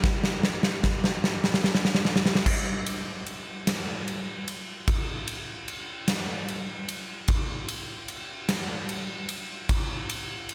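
Hopeful and soaring, this short rock cut in 6/8 features a huge arena drum kit alone, with a punchy kick, a medium-tuned snare and bright crash and ride cymbals sitting up front under light reverb. It opens with a drum fill that builds up over the first 2.4 seconds, then settles into a new section that carries through to 10.5 seconds, with the acoustic kit ringing out in a hall-like space.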